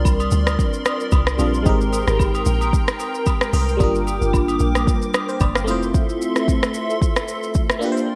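A lightly swung sixteenth-note groove from an up-front electronic afro-pop kit, with deep kick, smooth hats, rim click and shaker under 12-bit sampler grit and gated reverb, drives this soulful, hypnotic amapiano excerpt, where a round, dark log drum bass and band-limited woodblock and agogo bells drop out at 5.9 s and 5.8 s while a biting, phased FM electric piano and a hollow, flute-like pad, pumping beneath its ensemble chorus, carry the jazzy chords through a bright 1980s-style digital mix.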